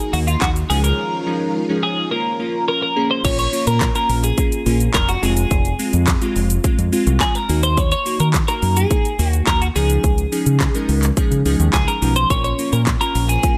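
Driving and energetic, this dance-pop excerpt moves at 106 BPM in a straight 4/4, sitting in Bb minor and cycling through Ebm, Dbadd9, Bbm and Fm. A bright, twangy twelve-string electric guitar carries the melody up front, its clean, compressed picking colored by analog chorus. Glassy digital keys supply the accompaniment with fast-attack, decaying tones, a sub octave and a filter sweep, pumping through sidechain compression, while a round, dark fingered electric bass plays deep dub lines that also pump with the beat. A punchy, layered pop drum kit of kick, fat snare, metallic hi-hats, handclaps, shaker and crash sits prominently with a tape-warm, electronic edge. A shimmering vintage string machine of violins holds soft-attack chords through the opening 3.2 seconds, which include a break from 1.0 seconds, then drops out and returns at 12.3 seconds. The mix is dry, with little reverb.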